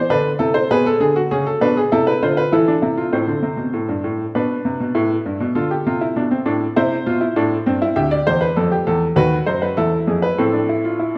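Joyful and elegant, this brief passage cut from a longer classical piece is a baroque-style three-part fugue for solo baby grand piano at 99 BPM in a straight 4/4, tuned slightly sharp to A4 = 441 Hz. The piano sounds brilliant, worn and natural, placed up front and ranging from D2 to E5, while a recital hall reverb with a 1.5-second decay adds a wet bloom. Opening in A minor, the harmony shifts into a new section at 3.1 seconds, moving through E minor, D minor and C before a B major and E major cadence resolves home to A minor at 10.4 seconds.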